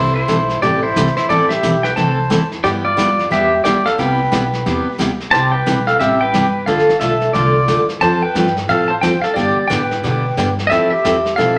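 This western swing country excerpt moves at a brisk 178 BPM in 4/4 with a bouncy swung eighth-note feel, sounding playful and cheerful in C major. A twangy pedal steel guitar carries the melody up front, its bright, clean, compressed tone played with fingerpicks and slide, with volume swells. A jumbo steel-string acoustic guitar is picked up front in accompaniment, full-bodied with audible finger squeak, while a pizzicato upright bass with gut strings gives a woody, thumpy low end. A vintage brush drum kit enters at 0.3 s, its brushed snare, hi-hat and punchy kick sounding warm and rolled-off in a small, pumping room. The harmony moves from Am through G6 and Cmaj7 to C, then Dm, F and G before landing on Fmaj7. The whole performance sits in a wet, large studio reverb.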